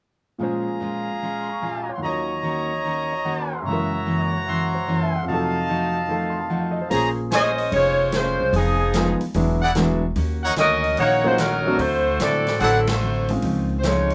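A mellow saxophone section carries the melody up front, its vintage, vibrato-laden tone entering at 7.3 seconds and sitting above the rest of the band in this sultry, brassy big-band swing excerpt in Bb minor at 147 BPM. Before it arrives, a picked steel-string acoustic guitar with a full-bodied jumbo sound and audible finger squeak plays alongside a warm concert grand piano, whose smooth voicing reaches into deep bass, to lay down chords under tight, brilliant trumpet stabs shaded with light vibrato and a soft attack. At 6.9 seconds the second section begins as a pizzicato upright bass with a woody, dark tone and a distant, roomy drum kit come in, the drums playing hi-hat, ride and a medium-tuned snare under dark cymbals. The harmony moves through rich minor, dominant and ninth chords before settling on a Dbmaj9, and the band hits an accent at 12.8 seconds as the trumpets drop out. A moderate club reverb places the ensemble in a club-sized space.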